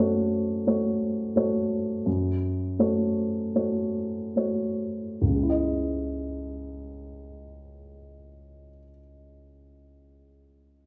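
A wet, roomy reverb from a large studio surrounds a boxy, mellow baby grand piano that sits up front, its short sustain heard clearly in this fragment of a longer classical piece in C# minor. Played with a rubato feel in 4/4 at roughly 70-91 BPM, the piano spans C#2 to D#5 in a reflective, longing accompaniment that slows over the opening on an F#m chord. At 5.2 seconds it moves to a C#madd9, and the piano carries on until 10.9 seconds.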